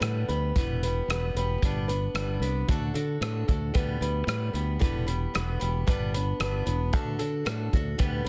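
A straight 4/4 pulse at 113 BPM drives this short fragment of a longer folk rock and heartland rock piece in G major, its nostalgic, jangly mood set by chords moving from G through Em7 and D. A natural country drum kit plays throughout, its hi-hat, rim click and punchy kick sitting up front in a dark, smooth sound with a rolled-off top, and a touch of soft clipping on the snare. A fingered electric bass, direct and growly, anchors the low end from E1 to D3 with a punchy presence. An old ladder-braced acoustic guitar carries the picked accompaniment between D3 and B4, its old strings giving a woody, boxy, warm character lifted by plate reverb. Light studio reverb surrounds the trio, and the dense, heavily limited modern master keeps the whole fragment close and full across its 8.3 seconds.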